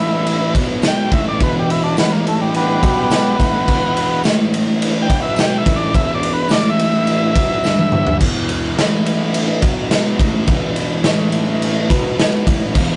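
An overdriven, buzzy combo organ with heavy vibrato leads this swaggering, raw garage rock cut at 106 BPM, playing an up-front solo melody until 8.2 seconds while a thick, double-tracked fuzz guitar grinds out a riff in the low register over power chords moving between A, B and E. A punchy, saturated drum kit sounds through a pumping stone room, with crash, ride and toms and a fill at 7.7 seconds before the organ drops out and the guitar and drums carry on alone, while a jingly tambourine sits very quiet in the background until 7.8 seconds. The rough rehearsal-room recording has light reverb and a rolled-off top end.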